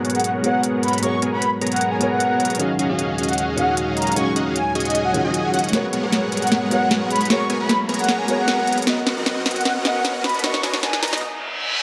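A huge, thick supersaw riff sits up front in this dreamy, emotional future bass excerpt. Its detuned sawtooth stack is compressed and run through a low-pass filter that sweeps across the whole passage as the track builds. Above it, a breathy, flute-like synth lead enters at 0.1 s with a soft attack, vibrato, analog chorus and dub echo. Beneath, a felt-muted upright piano adds mellow, intimate accompaniment, while an airy pad holds slow-attack chords with chorus, moving through G#m11, D#m11 and Bmaj7. The half-time trap drum kit brings a sharp snare and crisp hats with overdrive and a small-room character, playing a fill from 5.7 s before a very quiet reverse cymbal at 11.2 s caps the build alongside a faint riser, all set in a lush hall reverb.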